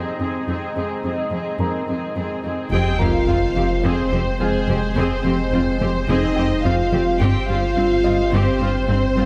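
The mellow French horn section stands out, entering at 2.7 seconds with sustained chords that sit forward in this tense, futuristic hybrid orchestral and electronic film cue in F minor at 107 BPM. Before that, a clear, focused viola section, a deep, moody ambient pad with chorus and its own reverb, and a very quiet concert grand piano with short sustain build tension, while a smooth cello section holds the bass from 0.2 seconds. At 2.7 seconds the impact lands with a huge, bright sub drop, and lush, distant violin sections take up a melody and a second line above the horns. Underneath, a round analog bass riff, a clean sine sub bass and a very quiet double bass section add low weight. The harmony moves from Fmadd9 to Csus4/G near 7.2 seconds, and a moderate scoring-stage reverb gives the ensemble a spacious, cinematic sound in this brief excerpt.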